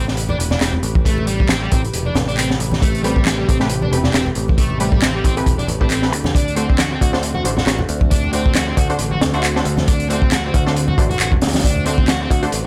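Breakbeat with a raw, funky edge, this swung excerpt rides a crunchy, saturated drum kit placed up front, its punchy kick and high-tuned snare dulled by a dark, rolled-off top. Low-tuned congas with a thick-skinned sound sit close and dry in the background, while overdriven, layered electronic handclaps carry the ambience of a large room. A growly, direct picked electric bass anchors the harmony as it moves from Am9 to D7 at 6.3 seconds, and a double-tracked fuzz guitar plays a distorted riff with delay. Behind them, a swirling, evolving analog pad holds sustained chords through phaser and chorus, roughened by vintage 12-bit sampler grit and pumping against the beat. From 3.0 seconds a bold, bright orchestra-hit-like synth stab with a detuned sawtooth body and noise layer joins, its short, plucked hits trailed by reverb and delay.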